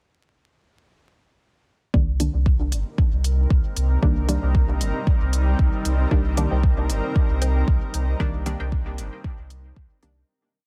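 Dub techno with a hazy, deep mood, where a deep four-on-the-floor electronic kick and smooth programmed hi-hats drive a dotted sine sub bass, sparse muted sawtooth chord stabs trailing dub echo, a cloudy granular pad with built-in reverb, and a brighter wave-folded stab riff in the background from 6.5 to 8.7 seconds, all pumping under sidechain in a dense, heavily limited mix flecked with vinyl crackle before a fade-out from 7.5 seconds.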